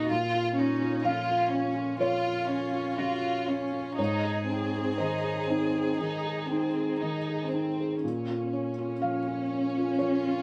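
A felt-muted upright piano sits up front in this short neoclassical excerpt, its soft, mellow tone carrying an intimate closeness and audible action noise that lends a vintage character. Over it, a chamber violin section sings the melody with a rich, vibrato-laden, bowed sound, focused and smooth at the top. A single cello adds a second line, bowed with its own vibrato and a focused tone, sitting lower in the balance than the violins and piano. The time is free and rubato, and the harmony moves from Bb minor to Ab at 4.0 seconds and back to Bb minor at 8.0 seconds. Played live together in one room with wet studio reverb, the three parts create a fragile, reflective mood across the 10.4 seconds.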